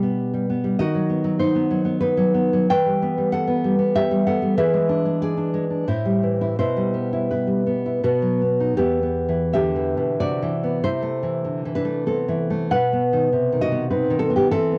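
A fingerpicked nylon-string guitar sits up front, its warm, cassette-tinged tone filling a modest booth in this passionate, intimate romantic solo piece in E minor, a passage cut from a longer work. Moving in a rubato 3/4 that drifts between 77 and 102 BPM, the playing spans E2 to G5 and travels from G/B through Em, E7 and Am7 before settling on B. At 8.8 seconds a new section begins on Em, passes through Am/C and closes on B by 14.8 seconds.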